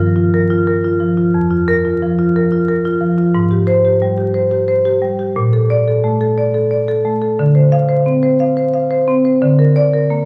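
A solo marimba opens on a Gm7 chord, its rosewood bars struck with medium hard mallets to give a woody, dark tone that sits up front. This brief passage from a longer contemporary classical piece moves at a slow, rubato 59 beats per minute in 6/8, with the marimba ranging from F2 up to F5 and tuned slightly low to A4 = 436 Hz. The harmony drifts through Fsus4 and Abmaj7 before settling on Bbmaj7 at 5.4 seconds, then Dm7 and a closing Bb/D near 9.4 seconds. The attack of each note is percussive, yet the sustained sound stays smooth, creating a hypnotic, reflective mood. A wet recital hall reverb lets the notes bloom into the space, while vinyl crackle adds a worn, intimate texture across the full 10.3 seconds.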